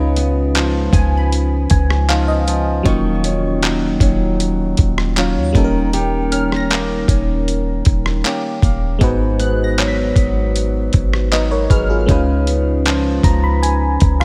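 A dusty, sampler-style drum kit sits up front with a gritty, compressed sound, its thumpy kick joined by handclaps, hi-hat and rim click from 0.2 seconds in this moody, longing contemporary R&B cut from a longer piece. Beneath it, a deep, boomy 808-style bass with a sine core and a fast, decaying attack anchors the low end. An FM electric piano with a bell-like attack and a chorus effect carries the accompaniment through rich ninth and seventh chords, adding fills around 1.3 seconds and again at 12.9 seconds. A fingerpicked nylon-string guitar with fresh strings and audible finger squeak plays arpeggios through a digital delay. In the background, a crystalline, detuned wavetable pluck with ring modulation and a filter sweep glints high above the rest with chorus and delay until 12.4 seconds, all within a dry sound with little reverb.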